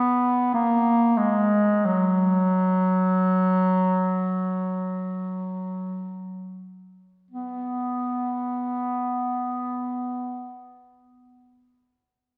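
A lone bass clarinet, punchy with a vintage character, sings a lyrical, serene line in this expressive classical excerpt, playing from the start until 10.5 seconds. The music gradually slows through its opening passage before moving into a new section at 7.3 seconds. A generous concert hall reverb surrounds the instrument, which sounds heard from further back in the room.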